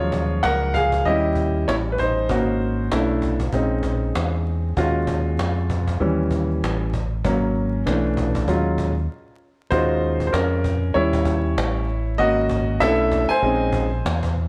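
Jazz-hop with a nocturnal, cool mood and a swung groove, where a clear, smooth vintage grand piano sits up front, playing solo lines over extended minor-eleventh and altered-dominant chords, backed by a dark, round fingered electric bass and a snappy cajon set back in a distant large room, all under light reverb and vinyl crackle, with a brief break at 9.1 seconds before the second section begins at 9.7 seconds.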